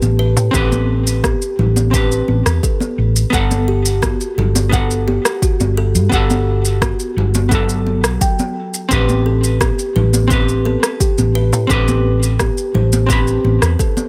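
Bathed in light reverb and digital ambience, this wistful sunset chillout excerpt sets a dark, clean vintage hollow-body jazz guitar and a woody, ringing kalimba playing arpeggios, both with digital delay, over an up-front, round short-scale fingered electric bass, layered electronic shaker and rim click and a deep electronic kick entering at 0.5 seconds (both overdriven), and hard-hand congas in the background, moving from Am11 to Gmaj9 and back.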